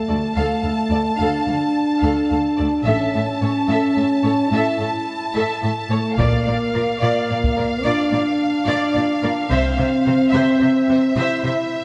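A slow 12/8 pulse at 72 BPM carries this brief epic, dramatic orchestral film-score excerpt in D minor, where lush bowed violins sing a vibrato-rich melody over a second violin line, rich viola accompaniment and a cello bass, while a dark, roomy French horn section holds sustained chords, a soft-attack double bass section joins at 2.9 seconds, and a heavy-sticked taiko ensemble strikes from 6.2 to 7.7 seconds, all bathed in a wet concert-hall reverb.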